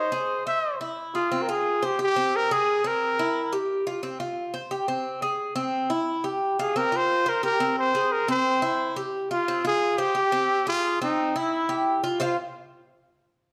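Warm and nostalgic, this Latin fragment in F harmonic minor moves at a brisk 176 BPM in straight 4/4. A breathy, whispered trumpet with vibrato and a soft attack sings an intimate, pop-style melody up front from 0.0 to 3.5 seconds and again from 6.6 seconds. Beneath it, a mellow Cuban tres keeps up picked arpeggios throughout, its metallic double strings partly doubled at the octave. Both sit inside the moderate bloom of a large studio reverb.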